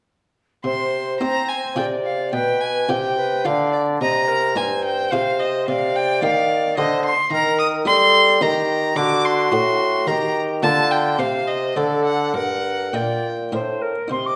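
A rich, gut-string violin sits up front in this solemn, flowing baroque-style sonata movement, carrying the second line with light vibrato and a period-style, reedy edge. Alongside it, an airy wooden alto recorder sings the melody from a distance, its tongued notes carrying a soft chiff and gentle vibrato. A warm bassoon grounds the texture as the bass line, roomy yet present, while a buff-stop harpsichord supplies muted, lute-like plucked accompaniment in a dry French style. The four parts enter together at 0.6 s and play through to the end of this excerpt at a rubato 108 BPM in 3/4. The harmony begins in C minor and turns toward G minor from 7.3 s, settling on a G minor chord at 12.3 s, all held in the moderate glow of a recital hall.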